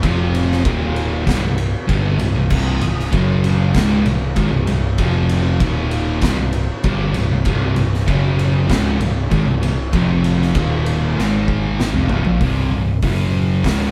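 A straight, heavy 4/4 groove drives this brief ominous, hypnotic stretch of stoner and doom metal, cut from a longer piece. Two thick fuzz guitars play the riff together throughout, one distorted and picked closer in the mix, the other sitting in the background, cycling through a brooding chord loop built around C minor with an unsettling F# power chord. Beneath them, an overdriven picked electric bass holds down the low end with a round, punchy tone. The oversized, low-tuned drum kit sits up front, gritty and saturated, with a boomy kick, fat snare and dark cymbals ringing in a pumping, bright stone room. A drum fill from 11.2 to 12.4 seconds leads into a short new section that carries on until 13.9 seconds. The band sounds as if it is playing live in one room, with moderate studio reverb adding weight to the heavy sound.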